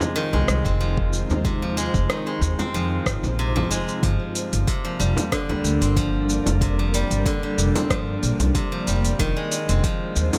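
A bright, silvery steel-string zither played with fingerpicks rings up front in delayed arpeggios in this meditative organic downtempo excerpt, joined by an ethereal, detuned pad with ensemble chorus, tremolo and sidechain pumping, an afro-pop kit of metallic hi-hat, rim click and shaker run through overdrive, a soft-handed acoustic frame drum, a woody, dark pizzicato upright bass with tube saturation entering at 0.3 s, and a deep, overdriven electronic kick from 0.7 s, as the harmony moves from Fm7 to Gm at 4.0 s within a light digital ambience.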